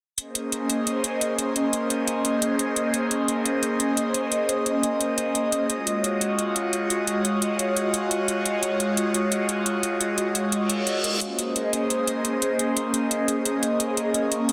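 This soulful, rolling liquid drum and bass excerpt opens with an airy, breathy pad holding sustained chords, its detuned sawtooth and noise layers softened by slow attacks, long releases, chorus and phaser, while up-front metallic electronic hi-hats, tape-warm and layered, run alongside it throughout. The harmony moves from Bbm11 to Ebm11 at 5.7 seconds and back to Bbm11 at 11.2 seconds, just as a brief reverse cymbal rushes in from 10.7 seconds. A moderate plate reverb and a dense, heavily limited modern master give the short fragment a polished sheen.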